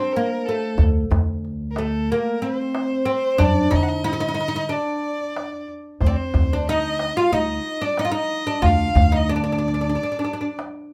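A woody, plectrum-plucked fretless oud carries the melody up front from 0.0 s, joined by a single close, clear violin with vibrato on a second line. At 0.8 s, a pizzicato upright bass and a deep clay-shell darbuka struck with hard hands enter, setting a soulful, hypnotic groove at 92 BPM in 4/4. The music moves from D maqam hijaz to D maqam kurd at 6.0 s, all within a moderate studio reverb, in this short cut from a longer Arabic maqam ensemble piece.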